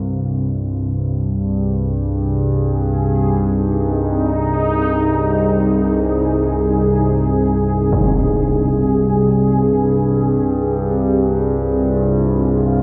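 Drenched in a huge ambient reverb with a very long decay, this dark ambient drone fragment, cut from a longer piece, feels dark and unsettling. Beneath everything sits an analog drone in the low register, a warbling, vintage sawtooth and pulse-wave tone with pulse-width modulation, slow attack and long release, mellow and up front with chorus adding to its evolving character. Above it, a sweeping, resonant pad holds sustained chords, its detuned sawtooth and sine layers rising slowly out of a filter swell and lingering with a long release, also chorused and up front. The harmony shifts from a bare C5 to Ab/C at 0.9 seconds and stays there. At 7.9 seconds a huge, bright impact lands in the background, muffled by a low-pass filter.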